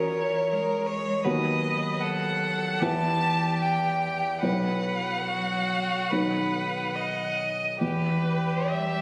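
This slow, solemn and yearning romantic movement for piano quartet opens with all four players together, a warm concert grand piano with deep bass and short sustain laying down the accompaniment beneath a rich, focused violin singing the melody with vibrato, while a clear, smooth second violin and a softer cello, set in the background, carry supporting lines. The tempo breathes with rubato around 65-81 BPM in 4/4, moving through chords from F#7/E to B/D# and Em, then resting on Bsus4 and B before returning to Em. Heard as a short cut from a longer piece, it sounds captured on a phone in the room, wrapped in a wet, lingering concert-hall reverb.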